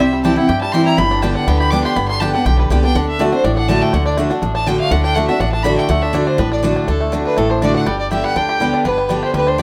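Bluegrass at a brisk 244 BPM in D mixolydian, driving and joyful, this short cut from a longer piece opens with the fiddle taking a solo that runs to 6.9 seconds, its clear, bowed tone carrying light vibrato and sitting up front. Beneath it, a fingerpicked banjo carries the melody with a twangy, percussive bite, while a full-bodied dreadnought acoustic guitar, picked and placed forward in the mix, supplies the accompaniment. An upright bass on gut strings anchors the low end with a woody, thumpy pizzicato. At 6.9 seconds the music moves into a new section where the fiddle takes over the melody in a lower register, its earthy sound keeping a smooth top. The harmony moves through C, G and D before returning to G, all set in a moderate studio reverb.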